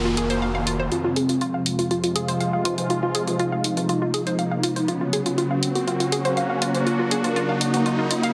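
A straight 4/4 pulse at 121 BPM drives this cinematic melodic techno excerpt in F phrygian, with tape-warm, high-passed electronic hi-hat and congas entering at 0.2 seconds. A punchy, saturated sawtooth sequencer bass and a very quiet, nasal, string-like drone sound only until 0.9 and 1.0 seconds. After an opening noise sweep, a riser carries a build-up while a bright, up-front resonant pad holds chords moving from Ebm/F to Fm and Gb alongside a round analog pluck arpeggio with dub echo and a thick, detuned unison lead with vibrato and delay, both shaped by filter sweeps, all set in moderate stage reverb and heavy multiband compression for a dense, radio-like finish.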